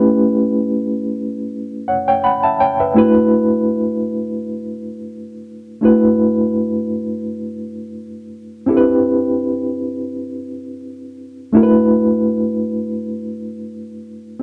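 A reed electric piano plays solo and up front, its reedy, worn voice running through its built-in speakers with a fast tremolo shimmering over every held chord. This short soul excerpt unfolds in free time, with a lush, romantic mood. The tone is clean yet slightly out of tune, spanning A3 to B5 and moving from A9 to D69 in D major. At 5.8 seconds the harmony shifts to D mixolydian, passing through Cmaj9 before settling back on D69. A wet studio reverb with a brief 0.6-second decay surrounds the piano, which was captured live in a single room, and the passage ends at 14.4 seconds as a fragment cut from a longer piece.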